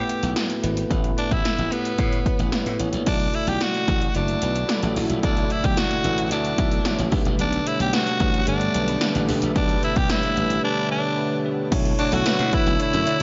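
A dry-leaning mix with only light reverb and a dark top end frames this short, moody and dramatic slice of 1980s-style pop, cut from a longer piece and moving in a straight 4/4. Up front, a raspy, gritty tenor saxophone carries the melody as a solo line with vibrato and a tape echo trailing its phrases. Beneath it, a bell-like tine electric piano treated with phaser supplies accompaniment, while a glassy slap bass adds punch and sparkle. The analog electronic drums hit hard with a punchy kick, a gated snare, metallic hi-hats, tambourine and crash, all driven through overdrive and sitting prominently. Across the excerpt the harmony shifts from Asus2 through Dadd9 and Gadd9 to a brooding Bm11. At 3.1 seconds a very quiet vintage string machine of violas enters with soft-attack sustained chords, and at 12.0 seconds, over the Bm11, a funky, detuned sawtooth polysynth with chorus slips in behind with filter-swept stabs.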